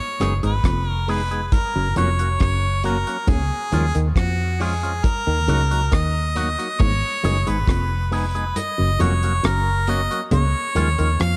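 A straight 4/4 roots reggae groove at 68 BPM sets a laid-back, serious mood in this short excerpt. The dry, dark drum kit with its tight kick, hi-hat and rim click sits beside a round, foam-muted vintage bass up front, while a mellow muted clav riff and ringing, high-tuned congas stay in the background. A twangy, scooped envelope-filtered electric guitar with dub echo fills out the chords from Abm through Gb, Db and Ebm, under a clear, punchy harmonica melody with light vibrato and dub echo that opens alone at 0.0 s; the kick drops out from 8.6 s, all in a small room.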